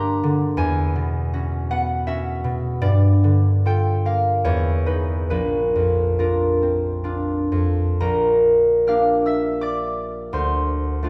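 A ringing, up-front concert harp fills a reverberant recital hall in this peaceful, dreamy classical excerpt, played solo in a rubato 3/4 with fingerpicked chords ranging from Bb1 to F6 and drifting through Gm7, E69, Emaj7 and Bbadd9 before settling on Bb6 at 8.0 seconds and Dm7 near 10.3 seconds.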